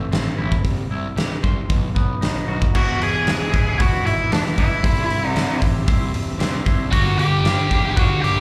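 Cathartic and restless, this brief quiet-loud alternative rock excerpt at 115 BPM opens with clean, compressed semi-hollow guitar arpeggios carrying tremolo and slapback echo over a fuzzed, overdriven picked bass and a huge, punchy, up-front arena drum kit with crash, hi-hat, kick and snare, before a dark octave-fuzz lead guitar takes the melody at 2.8 seconds and a bright, scooped high-gain guitar riff joins at 6.9 seconds, moving through Am, C, B, E, C and Gm in a live club sound heard through the venue's PA.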